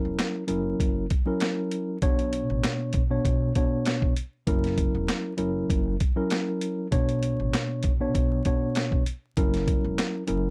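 A mellow tine electric piano opens this dark, tough boom-bap hip-hop excerpt at 98 BPM in B harmonic minor, its clean, up-front tone colored by cassette tape and filtering as the chords move between F#7 and Bmadd9. A woody pizzicato upright bass on steel strings joins in the low register. A compressed, pitched-down sampler-style kit sits up front, with a thumpy kick, high-tuned snare, handclaps and hi-hat over a lightly swung 16th-note feel. The sound is dry and gritty from hardware, with vinyl crackle throughout.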